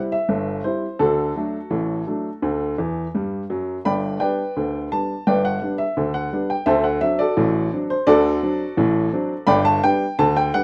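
A lone upright piano opens this short, cheerful ragtime cut, sitting up front with an intimate, woody tone and the clatter of its action audible beneath the notes. The instrument carries everything alone across its span from G1 up to B5, in a lively, straight two-beat feel. A brief piano fill arrives at 2.8 seconds and leads into a new section at 3.9 seconds. The harmony moves from C to D, then settles on G before passing through D7 and returning to G at 9.5 seconds. Light reverb gives the smooth, vintage sound a little air while keeping it close and personal.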